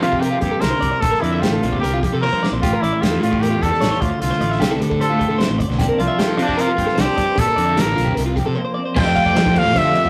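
A rough rehearsal-room recording with warm saturation and moderate studio reverb carries this restless, wistful math rock and midwest emo fragment at 151 BPM in straight 4/4. An up-front clear trumpet with light vibrato sings the melody over tremolo-treated hollow-body guitar chords, while a compressed twelve-string guitar picks clean arpeggios through spring reverb and slapback echo. Beneath them sit a dark, round fuzz bass and a loose indie drum kit with a tight kick and rolled-off top, which fills at 2.2 seconds and breaks at 8.6 seconds before a bright, double-tracked overdriven guitar riff slips in behind at 8.9 seconds.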